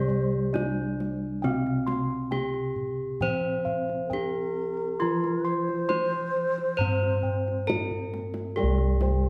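A dark, warm recording set in a moderate recital-hall reverb carries this serene, ceremonial Javanese gamelan excerpt in C slendro at 67 BPM in a straight 4/4. An up-front bronze metallophone struck with a horn mallet rings out the bright melody over a lower metallophone whose paired tuning gives shimmering beats, while bossed gongs add mellow, padded arpeggios and a close, dry, full bass, and a soft-handed kendang keeps time. A breathy low xiao weaves an expressive, tongued second line with vibrato until 8.2 seconds, a drum fill arrives at 7.9 seconds, and a soft metallophone adds a brief arpeggio from 8.6 seconds.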